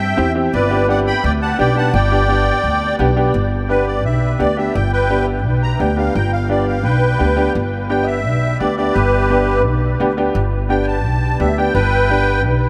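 A dreamy haze of huge ambient reverb wraps this festive, sunny Latin fragment in G major, moving at a brisk 171 BPM in straight 4/4. Up front, a reedy, shimmering musette accordion carries the melody with a touch of tape echo and takes a solo from 3.3 s, while a woody pizzicato upright bass anchors the low end. Alongside them, a bright, slightly detuned upright piano with audible action noise and long sustain fills in the accompaniment over a brief C to G change.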